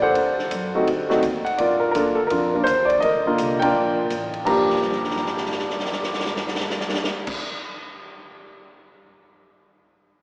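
A jazz piano trio excerpt in G minor swings briskly at 167 BPM in 4/4, its mood moody and cool. The grand piano carries the melody up front with a polished, present tone, ranging from G2 to Bb5 over harmony that moves from D7b9 to Gm7. Beneath it, the upright bass plays pizzicato on gut strings with a woody, thumpy sound, sitting low in the mix. The acoustic drum kit, with its punchy kick, medium-tuned snare, hi-hat, ride and crash, comes in at 0.2 seconds. The whole band hits an accent at 3.6 seconds, and the drums play a fill through the second passage, carrying on alone after piano and bass stop at 7.3 seconds. A long cathedral reverb bathes the performance in a churchlike space, though the overall sound has the boxy character of a small speaker.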